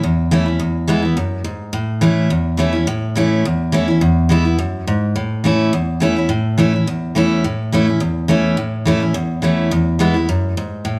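Bluegrass at a brisk 210 BPM in A major, joyful and driving, with a light swing on the eighth notes. A lone picked steel-string acoustic guitar carries the whole 11-second excerpt, full-bodied and up front, its jumbo body ringing across a range from E2 to E4 with audible finger squeak. A moderate studio reverb opens up the sound as the harmony moves between A and E through two matching passages.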